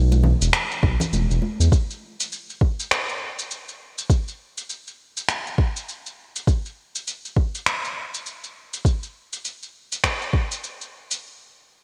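A softly swung 101 BPM pulse in 4/4 opens this mystical, earthy organic downtempo excerpt, where a nasal, sawtooth-edged synth bass with vibrato and sidechain pumping sounds only until 1.7 seconds alongside briefly ringing, close congas, while up-front electronic shaker and finger snaps with gated reverb carry on to 11.2 seconds over a soft electronic kick entering at 0.8 seconds, all set in light reverb with bright 1980s-style digital production.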